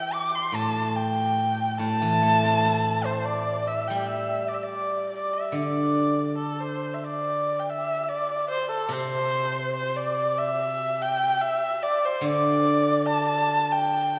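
A rubato 2/4 pulse at 72 BPM carries this graceful, festive Chinese traditional chamber piece in D shang mode, cut from a longer work, in which a single dark erhu, bowed up front with light vibrato, soft attacks, portamento, an airy, intimate tone and a smooth top, carries the melody from A4 to D6 over a bright, ringing steel-string zither played with fingerpicks, whose silvery accompaniment also sits up front, both playing throughout the 14.2 seconds in a wet concert hall reverb heard from further back in the room, with the music moving into a new section at 7.2 seconds.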